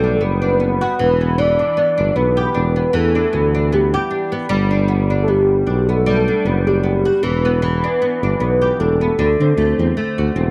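This indie pop fragment, lifted from a longer piece, feels dreamy and sunny, moving at 77 BPM in 4/4 with a gentle swing on the sixteenths in G major. A soft, octave-layered synth lead carries the melody between G4 and D5, its round, dark blend of triangle and sawtooth with a sine sub octave giving it fullness, with quick-attacking sustained notes colored by vibrato, tremolo, analog chorus and slapback echo. Beneath it, a fingerpicked acoustic flamenco guitar sits further back in the mix, its warm tone touched by analog chorus and a warbly pitch drift. A mellow tuba with light vibrato and a smooth top supplies the bass up front, reaching down to E1. The harmony sways between Gmaj7 and Em7 before turning to D7 at 9.2 s, all captured as a dry, close 1970s-style studio recording with light reverb.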